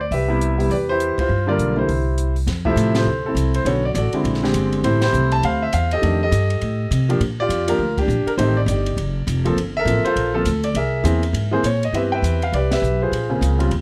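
An up-front, natural-sounding concert grand piano with deep bass carries the melody in this playful, relaxed swinging jazz piano trio excerpt, over a woody, thumpy pizzicato upright bass on gut strings and a dark, smooth compact cocktail kit of hi-hat, ride, punchy kick and high-tuned snare sitting lower in the mix, the band striking shared accents such as at 1.1 seconds amid light reverb as the harmony moves through seventh, ninth and thirteenth chords.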